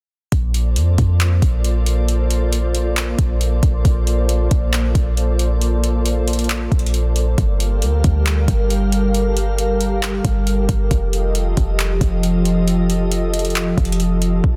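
Atmospheric cloud-rap hip hop in Bb major at 136 BPM with a half-time feel, this floating, blissful passage cut from a longer piece sets a glassy, ethereal FM pad holding chorused, reverb-washed chords that pump against the beat over a deep, boomy, sine-like 808-style bass and a soft electronic R&B kit of kick, handclaps and metallic hats, all running from 0.3 seconds through a Bbmaj7, Gm7 and F7 progression under a dense, heavily limited modern master.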